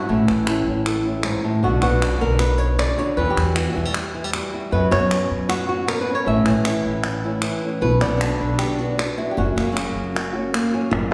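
Dramatic and fiery, this short flamenco excerpt sets an up-front fingerpicked guitar melody over a second guitar's background stabs, a woody, thumpy pizzicato upright bass on gut strings and crisp, close palmas hand claps, all cycling through A, Bm, Emadd9 and F#sus4 in the wet bloom of a recital hall.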